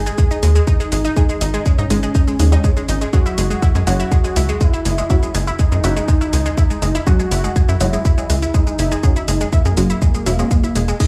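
A melancholic yet driving melodic techno excerpt at 122 BPM in 4/4, it opens on a thick, detuned unison lead with vibrato and tape echo, muted dub chord stabs phasing and pumping in the background, and a tight, up-front sawtooth sequencer bass, moving from G#5 to F# at 3.1 seconds. A bright, warbling unison pluck arpeggio and an overdriven analog drum machine with crash, hi-hat and shaker join almost at once, over a punchy, layered electronic kick that sits up front. A deep, moody analog pad surfaces barely audibly at 11.0 seconds, all within an echo-heavy mix with light reverb and small room ambience, tuned to A4 = 439 Hz.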